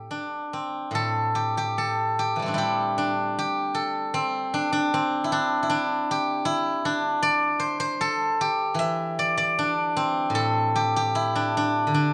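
Chinese traditional music for solo plucked strings, this short passage cut from a longer piece has an elegant, flowing mood. A single steel-string zither carries everything from the start to 12.1 seconds, played with fingerpicks and spanning from a low A2 up to E5. Its tone is silvery and ringing, sitting up front in the sound. The pulse moves in four with uneven, rubato timing, giving the phrases a relaxed, breathing quality. A moderate recital hall reverb surrounds the instrument, lending the notes a gentle sense of space as they decay.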